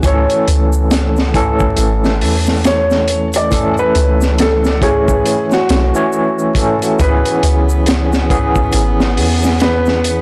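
A blown-out, overdriven mix with light reverb and vinyl crackle frames this smoky, cinematic trip hop excerpt, where a crunchy, dark breakbeat kit with a high-tuned snare and punchy kick sits up front beside a barky, gritty tine electric piano carrying tremolo, tape echo and 12-bit sampler grit. Beneath them a soft, round 808-style bass decays deep and dark, an egg shaker ticks dry in the background, and a felt-muted upright piano plays an intimate, mellow melody with audible action noise and tape echo. At 7.0 s, as the harmony moves from A to C#m7, a rich, reedy chamber string section enters with bowed gut-string chords dusted in sampler grit.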